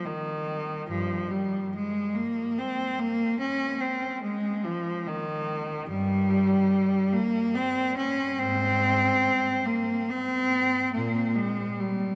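Nostalgic and serene, this brief fragment cut from a longer classical piece gives a single bowed cello free rein, unfolding in Ab major at 72 BPM in a rubato 3/4, tuned to A4 = 435 Hz. The rich, intense cello sits up front, singing with vibrato and a smooth top across its G2 to Db4 range from 0.0 to 12.2 seconds. A cathedral reverb with a 6.8 s decay and a dark production lend the solo line a deep, lingering halo.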